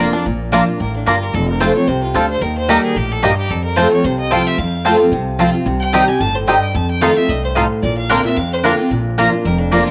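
A brisk 222 BPM swung 4/4 pulse drives this rustic, virtuosic bluegrass excerpt in Bb major, moving through Bb, F, Eb, Cm and F7 before settling on Bbadd9 and Bb. A bright, full-bodied picked dreadnought guitar sits up front with thumpy pizzicato upright bass on gut strings, and a woody double-strung mandolin adds stabs. A twangy fingerpicked banjo carries the melody in the background until 8.7 s, and a clear, focused bowed fiddle with light vibrato joins on melody at 0.8 s, all heard in a small room with light reverb and the soft grain of a home cassette recording.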